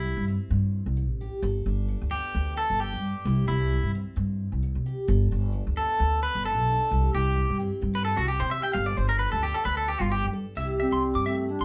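An up-front, twangy electric guitar at the edge of break-up leads this sunny highlife cut from a longer piece, spinning arpeggios and taking a solo through the first 10.6 seconds. Beneath it, a woody, dark upright bass is plucked up front, while a bright, full-bodied jumbo acoustic guitar is picked in the background, with a little finger squeak. The harmony sways between C and Gadd9 in a lightly swung 4/4. At 10.8 seconds a jazz-style clarinet enters with a warm subtone, light vibrato and scooped notes, joined by a very quiet, punchy trombone on a second line. The band plays live together in a small room with a moderate reverb and a rounded, soft-edged top end.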